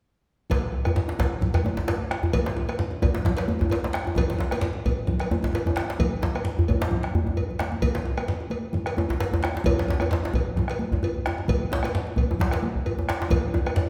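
West African traditional drum ensemble music, earthy and driving at 131 BPM in a straight 4/4, cut from a longer piece, in which a deep, dark bombo, high-tuned thick-skinned congas played with soft hands and heard close and dry, a metallic cowbell, and two medium-tuned djembes struck with hard hands (one up front in a live room, the other vintage and band-limited in the background) all play together from 0.5 seconds inside a reverberant recital hall heard from further back, with drum fills at 7.5 and 13.3 seconds.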